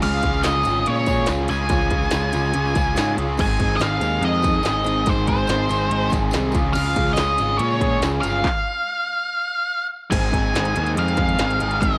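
A straight 4/4 beat at 143 BPM drives this brooding classic rock excerpt, with an industrial drum kit of heavy kick, clanging snare, crisp hi-hat, crash and handclaps alongside a distant, jingly tambourine that drops out at 8.3 seconds. Up front, a dark octave-fuzz lead guitar carries the melody through wah, distortion and slapback echo, while a biting overdriven guitar and a hollow-body semi-hollow guitar in the background play riffs over a growling, overdriven picked bass and a very quiet, shimmering twelve-string acoustic. The band stops from 8.4 to 10.1 seconds before returning as the chords move between Db and Ab, all set in light reverb and digital ambience.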